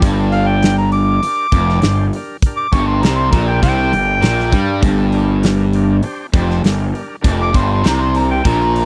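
A heavy, brooding blues rock and southern rock groove opens at once, built like a power trio in G minor at 100 BPM in a straight 4/4 and resting on a single G minor chord. The double-tracked semi-hollow guitar plays a bright, overdriven riff up front in a low register, beside a growly fuzz bass that is both direct and amped. A big acoustic drum kit sits forward too, with a punchy kick, a medium-tuned snare and hi-hat, while a thick, gritty tonewheel organ holds sustained chords in the background through a slow rotary speaker. At 0.3 s a mellow harmonica enters with a high, vintage-sounding solo melody, its scooped notes and light vibrato carried by overdrive and a slapback echo. The sound is dry and close, in the manner of a 1970s studio, and this brief section is cut from a longer piece.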